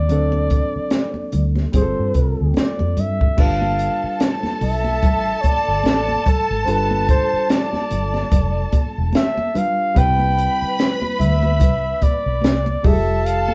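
Warm and smooth, this lush 1970s-style soul excerpt moves at a relaxed 73 BPM with a swung sixteenth feel, led by a mellow, up-front flugelhorn with vibrato and scooped notes over a reedy, barky, lightly overdriven electric piano. A round, punchy, foam-muted electric bass and a compact cocktail kit with a dark tone, high-tuned snare and tight kick sit close, while bright, high-tuned congas stay in the background. At 3.4 seconds an expressive bowed violin section enters as a second line, and the chords drift from D7 through G7 to Cmaj7 and Fmaj9 in a moderate studio reverb.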